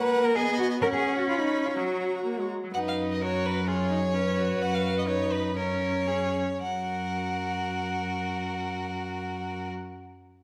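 A quick classical-period movement for string quartet in 2/4, set in F# major and running at roughly 104-130 BPM with a straight, graceful and spirited feel. The first violin carries the melody with a clear, focused tone and vibrato, sounding somewhat distant, while the second violin plays a smooth, even second line beneath it. The viola supplies accompaniment in a similarly clear, focused voice, and the cello anchors the bass with a rich, close, up-front sound that stands out above the others. All four bowed players sound together from start to finish of this short cut from a longer piece, moving through harmonies centred on F#, B and C#7, and the tempo slows between 4.1 and 6.6 seconds before the music settles back onto F# at 6.6 seconds. A moderate recital hall reverb gives the ensemble a natural sense of space.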